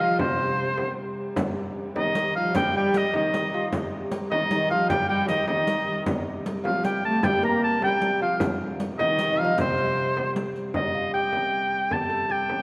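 A driving, ancient-sounding medieval dance in a straight 6/8 opens with a clear, up-front shawm singing a scooped, vibrato-laden folk melody over a nasal hurdy-gurdy drone, a fingerpicked double-strung lute and a distant, biting viola da gamba that drops out at 10.3 seconds, while a band-limited frame drum enters at 0.2 seconds and a close riq with dark jingles joins at 1.4 seconds, all cast in a wet concert-hall reverb in this fragment of a longer piece.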